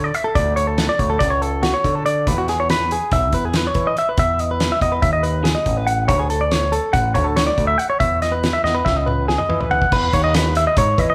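Recorded as a band playing live in one room with a moderate large studio reverb, this wistful, intricate math rock and midwest emo excerpt in 9/8 sets a bright, twangy clean electric guitar playing compressed arpeggios up front over a growling overdriven picked bass and a loose acoustic indie drum kit with a fat snare and punchy kick, moving through Dmaj7 and Emaj7 chords before a drum fill from 8.6 to 9.9 seconds leads into a brief new section.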